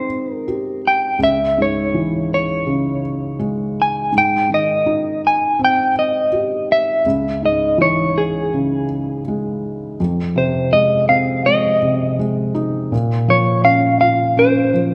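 A dark, warm production sits in a wet recital hall, its reverb lingering for about 1.5 s, in this nostalgic yet hopeful acoustic folk-pop ballad cut from a longer piece. It moves at 82 BPM in a straight 4/4, tuned slightly low to A4 = 439 Hz. Up front, a clean, fingered electric guitar carries the melody from Ab4 to Ab5, colored by a tremolo effect. Beneath it, a felt-muted upright piano plays mellow, intimate accompaniment from Db2 to G4, its thick felt softening every note while the action noise stays audible. The harmony shifts between Abmaj7 and Dbm before a new passage at 10.0 s turns to Fm7 and then Bbmadd9, with both parts playing throughout.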